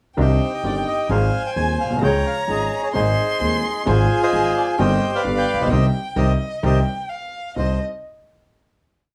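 A reedy, boxy bandoneon sits up front and carries a motif-based melody in sentence-like phrases, setting a melancholic, sultry mood for this short, complete tango in C minor. A close violin plays a bowed counter-melody with vibrato, soft attacks and expressive portamento, its tone warm. A bright, brilliant upright piano with an open, woody character and an acoustic pizzicato upright bass on steel strings both mark the tango rhythm, marcato in four, at 130 BPM in 4/4, though the overall feel stays rubato. All four parts come in together at 0.2 seconds as the harmony moves through Ab, Db and G chords back to C minor. The band hits an accent from 5.7 seconds, a brief break follows, and the piece settles on a final C minor chord at 7.6 seconds, all framed by light small-room reverb.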